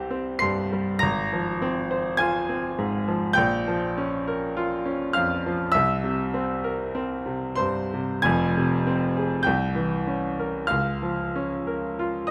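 A lone baby grand piano opens on a C chord and moves into a mournful, wistful romantic nocturne in F minor, its clear, present tone set up front by close, detailed microphones. The slow 4/4 pulse, around 44-52 BPM, bends freely with rubato as the harmony passes through B-flat minor, C7 and a darkened C7b9 across a span from F1 to C7. A moderate large-studio reverb adds a gentle halo to this 12.3-second fragment cut from a longer piece, and the tuning sits slightly below standard pitch at A4 = 437 Hz.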